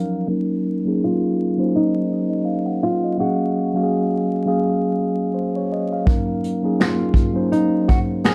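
Vinyl crackle and a moderate small-room ambience give this short cut from a longer lo-fi hip hop piece a hazy, reflective feel. At 83 BPM in 4/4 with a gentle swing on the sixteenths, a mellow, clean tine electric piano opens at 0.0 seconds and sits up front, playing an Ebm7 chord through a low-pass filter while a filter sweep runs across the passage in Eb dorian. At 1.0 seconds a small, fingerpicked nylon-string guitar enters with a quiet melody, also low-pass filtered, its warm tone carrying audible finger squeaks. A vintage brush drum kit arrives at 6.1 seconds, natural and up front, with finger snaps, hi-hat, a punchy kick and a medium-tuned snare played with brushes. The drums bring an acoustic, small-room presence to the filtered keys and strings, deepening the reflective, hazy mood.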